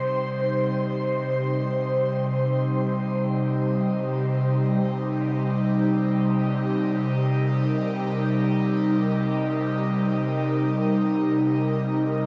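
A dark, warm recording bathed in a long shimmering reverb, this short ambient excerpt from a longer piece drifts in free time in C minor, tuned slightly below standard pitch. A single breathy pad carries everything alone for its 12.3 seconds, sitting up front with a soft, detuned blend of triangle and sawtooth tones over a noise layer, its slow attack and long release colored by chorus, phaser and delay. Resting on one C minor chord, the mood is reflective and melancholic.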